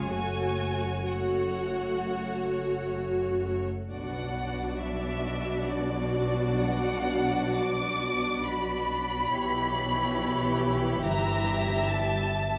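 Classical music for string orchestra, this slow romantic movement in 4/4 moves with rubato at 60-72 BPM, elegiac and solemn, shifting from F# minor to B minor at 3.9 s before darkening through diminished chords near 9.3 s and 11.0 s. Up front, a focused violin section carries the melody with vibrato and a smooth top, a second, even violin section sings an inner line beneath it, and a lush, expressive viola section fills the accompaniment. A smooth cello section and a close double bass section anchor the bass, all bowed throughout this cut from a longer piece, set in the wet bloom of a recital hall with a faint mains hum.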